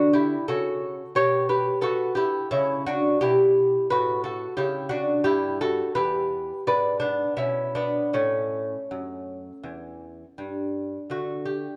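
A dark, warm production with light reverb frames a solo lute up front, its fingerpicked gut strings, doubled and in places octave-doubled, sounding delicate. This serene, flowing baroque-style dance in D major moves in 4/4 with a rubato feel at 78-90 BPM, passing from D through G/B, diminished chords and F#m/A to A before arriving on D5 at 11.1 seconds. The short excerpt, cut from a longer piece, lasts 11.8 seconds.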